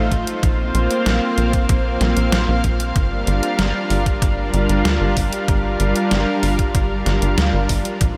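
Cinematic and moody, this brief synthwave excerpt, cut from a longer piece, moves in a straight 4/4 through Bbsus2 and Gm7 chords held by a lush, thick unison pad with chorus and sidechain pumping, over a tight, punchy sequencer bass with a sawtooth filter pluck that also pumps. A thumpy electronic kick and a detuned 8-bit drum machine's hi-hat and medium-tuned snare, both sampler-style and re-recorded in a small room, run from 0.1 to 8.1 seconds. A huge ambient reverb soaks the mix in a dreamy haze.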